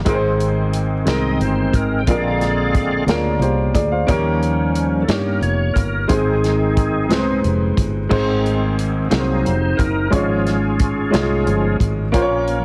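Heavily compressed with a radio-like sheen and a light reverb, this short cut from a longer slow gospel piece feels jubilant and soulful, rolling in a straight 6/8 lilt. A bright, reedy tonewheel organ sits up front and carries the solo across both passes of the same section, its sustained chords lightly overdriven with key click, chorus vibrato and a slow rotary speaker. Beside it, a woody, vintage upright piano plays smooth accompaniment with short sustain, also placed up front. A fingered electric bass, direct, foam-muted and punchy, anchors the low end. The acoustic country drum kit enters at 0.1 seconds with a dark, rolled-off studio sound, using a punchy kick, medium-tuned snare, hi-hat and dark crash cymbal. The harmony moves through gospel changes such as Bb7, Eb7 and Db/Ab before reaching Bbm at 12.1 seconds.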